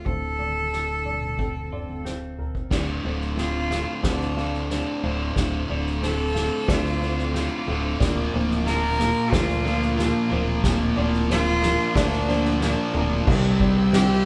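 A rich, nasal cello carries the melody in this cathartic, cinematic post-rock passage, its bowed line marked by light vibrato, an earthy, distant character and a touch of analog delay. Underneath, a clean, compressed electric guitar and a felt-muted upright piano with a mellow, vintage tone trace soft arpeggios, while a growly, punchy picked bass sits up front and a soft-mallet drum kit, roomy with dark cymbals, opens with a fill. At 2.7 seconds the build-up begins: a sludgy, overdriven guitar riff pushes forward, and a very quiet chamber string section adds sustained chords with a smooth top. A thick, bright fuzz guitar joins the riff from the background at 8.0 seconds, as the harmony moves from Dm7 to Bb/D and lands on C. The band sounds as if playing live together in one large studio room with moderate reverb, and the passage is cut from a longer piece.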